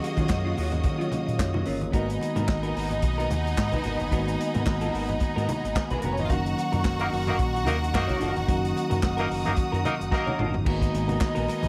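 Sultry and danceable, this disco excerpt moves at 110 BPM in 4/4 with a light swing on the sixteenths, drifting through lush minor-ninth harmony from Ebm9 to Abm9 and on to Gb6. A dry soul drum kit with dark cymbals, a tight kick, handclaps and toms drives the groove, while very quiet, low-tuned congas with thick skins sit underneath and a round, punchy fingered electric bass enters at 0.2 seconds. A mellow tine electric piano carries the chords and adds a short fill early on, joined by a twangy, compressed clean electric guitar tucked into the background. Two bowed string sections fill out the arrangement: an intense, bright one playing a second line and a smooth, even one holding high sustained chords further back. At 7.0 seconds a vintage horn section comes in up front with tight, octave-doubled stabs, and a drum fill leads into the closing return to Abm9 under a light reverb.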